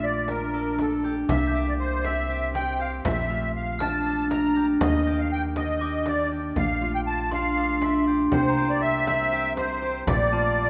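A reedy musette accordion carries the melody up front from the very start, over bright, ringing fingerpicked concert harp arpeggios and a punchy, plucky analog bass, in a playful, hopeful piece of contemporary chamber music in 7/8, cut from a longer work. A deep frame drum joins quietly in the background at 0.3 seconds, and a bell-like glockenspiel struck with hard plastic mallets adds dark, metallic texture from 1.3 seconds. The chords move among Bbmaj7, C7 and Ebmaj7, all set in a moderate concert hall reverb.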